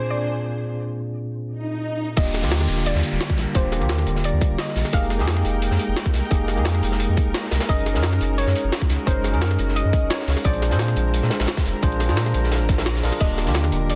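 This uplifting, dreamy liquid drum and bass excerpt in Eb major at 174 BPM opens on a Bb9 chord. A soft, round pluck melody with chorus and delay floats over bell-like electric piano chords, while a dark, lush bowed string section sits underneath with a filter sweep. At 1.6 seconds an electronic swell and downlifter lead into the drop at 2.2 seconds, where a deep, mellow sub bass, a tight, up-front electronic kick and two breakbeat kits enter together. The jungle sampler-style kit is pitched up, gritty and overdriven, with a high-tuned snare, hi-hat and crash, while a crunchy breakbeat kit stays in the background with a rolled-off top and high-pass filtered hats and snare. The strings pump with sidechain, the clean, direct piano carries delay, and the pluck melody comes and goes over chords moving through Ebmaj7, Fm11, Gb69 and Bb9. Light small-room reverb adds space to a dense, heavily limited master.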